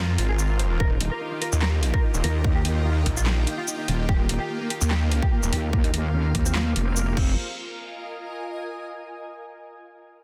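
Opening straight into a drop, this aggressive, menacing heavy wobble dubstep cut pairs a dark, clean electric guitar melody with digital delay, a lush, phaser-washed supersaw pad that pumps against the beat and a growling, distorted saw bass, while a blurred granular cloud pad hovers above; a dubstep kit with a huge snare and metallic hats soon appears, and at 0.8 seconds a punchy electronic kick and a saturated, chorused wobble bass arrive up front in a dense, heavily limited master, before the reverberant cloud pad lingers alone until 9.0 seconds.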